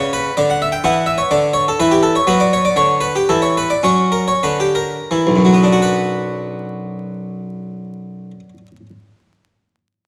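A brilliant, Italian-style harpsichord with octave strings sits up front and plays alone in this solemn, flowing baroque-style suite movement, cut from a longer piece, in 12/8 with free rubato. The plucked tone ranges from deep bass to the upper treble, and the pace slows from 0.4 to 5.8 seconds before a new section begins at 5.8 seconds, with the harpsichord stopping at 8.9 seconds. Close, detailed microphones capture the instrument within a moderate recital hall reverb, with a layer of vinyl crackle.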